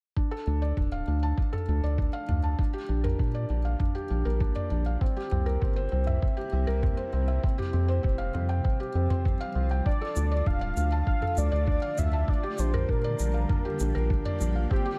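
A muffled, thumpy electronic kick drives a steady, straight 4/4 pulse up front, with overdriven electronic toms and shaker in the background and a round, dark analog bass, saturated and sidechain-pumped, sitting close beside it. A felt-muted upright piano plays a soft, intimate riff through delay, its action noise audible, while a cloudy granular pad enters at 1.6 seconds and gradually fades in, pumping behind it and lending this hypnotic, cinematic piano-and-strings electronica a blurred, evolving haze. At 9.9 seconds a velvety synth lead with chorus and vibrato takes up the melody over a dry, close mix.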